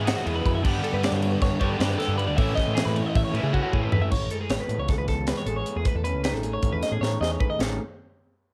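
An up-front, double-tracked overdriven semi-hollow guitar riff drives this intricate, playful math rock and midwest emo excerpt in 9/8 at 311 BPM. It sits over bright, clean, compressed twelve-string arpeggios, a growling overdriven fingered bass and a crisp, polished fusion kit with a punchy kick and high-tuned snare. At 4.1 seconds the riff gives way to a slightly broken-up, twangy guitar through a small old amp, with drum fills closing each section as the chords move from E through Gadd9 and Amaj9#11 to Amaj7#11, all captured as a dry home cassette recording with tape colour on the guitars.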